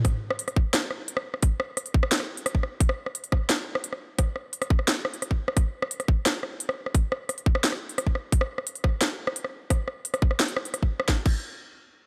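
A tight, layered electronic kick and a drum and bass kit with a cracking snare, crisp hi-hats, rim clicks and crash cymbal sit up front from the first second and run together through this 11-second cut. It's a dark, tense drum and bass groove at 174 BPM in 4/4, played with a half-time feel. Both drum parts carry a tape-warm, produced character under a light reverb, with the kick slightly louder than the kit.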